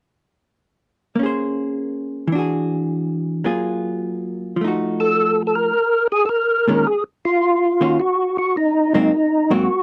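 Smoky and late-night, this short jazz excerpt in Bb minor swings at 106 BPM. A dark, clean hollow-body electric guitar plays compressed, picked accompaniment through rich extended chords from 1.2 seconds. At 5.0 seconds a fat, lightly overdriven tonewheel organ enters with the melody, its percussive key click, chorus vibrato and slow rotary speaker sitting up front in a dry, close 1970s-style studio sound with light reverb.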